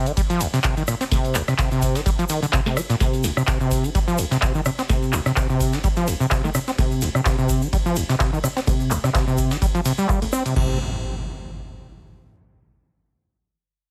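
A squelchy, saturated sawtooth acid bass opens this driving, raw slice of acid house, its resonant filter plucks snapping with a fast attack and decaying tail, colored by cassette tape and delay and sitting up front in the mix. Almost at once the drums fall in with a swung 4/4 groove: a dry, deep analog kick, and a booming analog drum machine with a crisp snare, handclaps, rim clicks, metallic hi-hats and crash cymbal, its snare, claps and hats set in a short room and darkened by low-pass filtering. Underneath, a pitched-up, compressed breakbeat sampler kit adds a tape-warm, gritty layer of medium-tuned snare and high-passed ride cymbal that pumps against the sidechain, while a grainy, bright egg shaker rattles distantly in a large room in the background. A filter sweep moves across the drums through the main stretch, and the whole track carries a heavily compressed, radio-like sound with light reverb. 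At 10.6 seconds, as the groove winds down, an up-front electronic impact enters and carries on until the clip ends at 12.5 seconds, cut from a longer piece.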